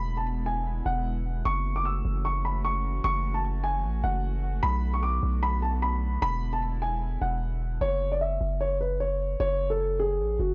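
A dark, boxy concert grand piano carries the melody up front in this eerie, hard-hitting half-time hip hop excerpt, with audible action noise, a low-pass filter and tape echo. Beneath it, a long 808-style bass holds deep, sine-like notes with a fast attack that then decays. A warbling, detuned tape-like pad with a nostalgic lo-fi tone fills in sustained chords, treated with chorus and its own reverb. The harmony moves through E7, F#m7 and Bm7 before the pad drops out at 7.8 seconds, leaving piano and bass to settle on an F#5 until 10.5 seconds. The overall sound is dry and gritty, with an intimate, close-up feel.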